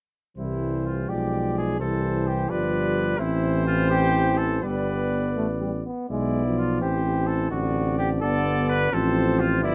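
A mellow, up-front tuba anchors this short classical brass quintet passage in 6/8, its soft attack and light vibrato carrying the bass beneath a warm, noble texture that runs from 0.4 to 9.7 seconds and is cut from a longer piece. Two trumpets share the upper voices: one sings the smooth-topped melody while a punchy, vintage-toned second trumpet sits forward with its own line. In the background, a close-miked French horn with gentle vibrato and a clear, distant, roomy trombone fill in the harmony, all framed by light reverb and a dark, warm production.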